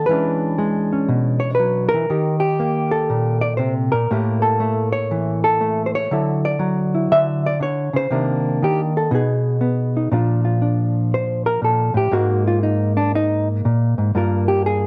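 Relaxed and swinging, this short solo jazz passage, cut from a longer piece, features a lone electric hollow-body guitar, fingered and clean, with a dark, compressed tone that sits up front in light reverb. The guitar moves through rich changes such as E13, A7b9, Dmaj9 and Cm9 over a swung 4/4 feel, spanning G2 to E5. At 10.1 seconds it shifts into a new section and takes a solo over Bbmaj7, Absus2 and Gm7 until 14.9 seconds.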